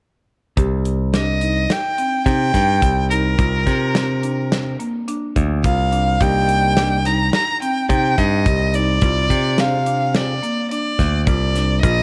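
A lightly reverberant studio sound frames this tense, driving progressive instrumental excerpt in C minor at 106 BPM in an uneven 5/4, where a bright, growly picked electric bass and an acoustic drum kit with a tight kick drive from 0.6 seconds under woody marimba arpeggios, a rich, focused bowed violin with vibrato carries the up-front melody from 1.2 seconds, and a mellow, lightly overdriven tonewheel organ with key click adds dark background accompaniment between 6.2 and 10.3 seconds over chords moving from Cm to Bb/C, Cm7 and a rootless Bb7/C.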